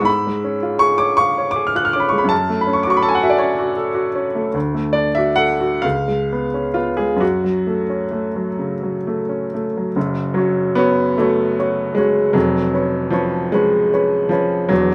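Light reverb surrounds a clear, intimate upright piano, placed up front with a woody tone and audible action noise, playing solo throughout this wistful, mournful fragment of a romantic classical nocturne in F# minor, moving with rubato in 6/8 at a slow 42-55 BPM, its harmony passing through C#7, F#m and D before a new section begins at 10.0 seconds and settles on C#7/E# at 12.4 seconds.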